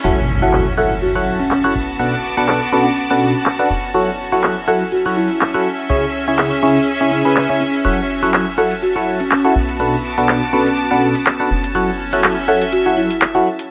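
Over a swung, punchy, overdriven analog drum machine with handclaps, hi-hat and shaker at 123 BPM, this bittersweet, energetic piano house cut in F# minor rides a biting, up-front FM electric piano riff through phaser, tape and delay, a plucky, funky analog bass, a clear bowed string section, and a woody, buzzing soft-mallet marimba melody that enters at 0.8 seconds, while an electronic impact opens the first 2.0 seconds and a plate reverb gives the whole mix its room.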